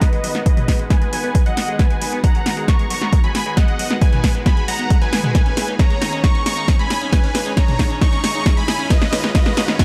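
An up-front, overdriven electronic kick leads this bittersweet, emotional uplifting trance build-up, joined by a dry analog drum machine whose punchy snare, hi-hat and toms run a fill throughout. Huge supersaw chords carry the melody under a filter sweep, sidechain pumping and dub echo, while a catchy plucky unison lead with vibrato, also swept, adds a second line through lush chorus and digital delay, over a bright, slow-attack pad of sustained chords. Underneath, a squelchy, resonant acid bass plays arpeggios and a very quiet, fat detuned analog bass enters at 0.2 seconds, with a faint riser coming in from 2.2 seconds, all set in light digital ambience.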